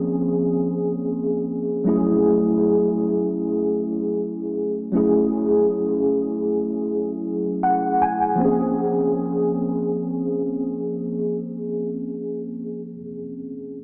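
A mellow, clean tine electric piano plays alone and up front in this longing, sensual R&B fragment in free time and Bb minor, its ensemble chorus and analog delay drifting through a lush hall reverb and a small-speaker sound as it moves from Bbm9 to Gbm9, adds a fill from 7.2 to 8.4 seconds, and returns to Bbm9 at 8.4 seconds.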